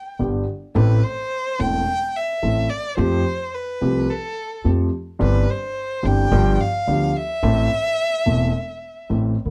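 A bowed violin, up front with vibrato, portamento and a soft attack, sings an expressive solo from 0.0 seconds over a smooth, vintage-sounding, intimate grand piano with audible action noise and deep bass, and a woody, growly pizzicato upright bass that both enter at 0.2 seconds, giving this short, melancholic and sultry tango fragment at 108 BPM a rubato feel and a dark, warm production.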